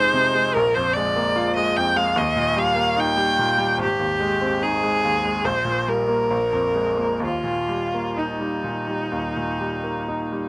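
Romantic classical duo in E-flat major, serene and warm, in which a single bowed viola sings the melody with vibrato and an airy, intense tone over a bright grand piano accompaniment, both playing throughout the 10.5-second passage taken from a longer piece. The rubato pulse drifts between 62 and 74 BPM in 4/4, and the harmony moves from Fm7 through Abmaj7 and Gmadd11/Bb before settling on Eb. Close, detailed microphones with little reverb place both instruments up front, catching the piano's brilliant long sustain and its audible action noise in an intimate sound.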